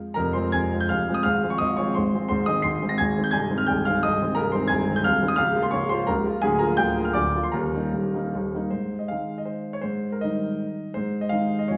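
Dotted rhythms drive this brief, rubato romantic triple-time dance in 3/4, taken at a flexible 142 to 191 BPM, where a solo grand piano with a polished, up-front presence spans C1 to C7, moving from F minor into Ab major at 4.4 s and a new section at 8.7 s, all with a rustic, proud air in a reverberant recital-hall setting, cut from a longer piece.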